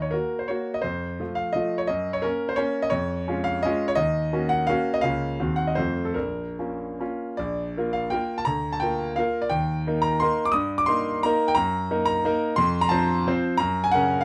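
A bright, brilliant concert grand piano plays alone, up front with deep bass in light reverb and a dark production, carrying a nostalgic, capricious romantic classical dance in 3/4 at 136-191 BPM with dotted rhythms and rubato, moving from Bb minor to Bb major at 7.4 s in this short excerpt cut from a longer piece.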